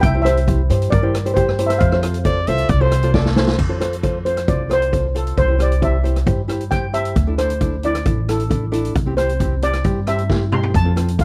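Carefree and sunny, this excerpt from a longer calypso piece moves at 134 BPM in F major: a shimmering steel pan, played with soft rubber sticks, carries the melody and takes a solo from 3.6 s, while a woody, thumpy pizzicato upright bass and a street-band drum kit with a boomy kick and a rolled-off top sit up front, a small thumb-plucked nylon-string guitar plays underneath, and a whispered trumpet with scooped notes and tape echo appears briefly from 2.3 to 3.6 s, captured in a dry, close 1970s-style studio sound.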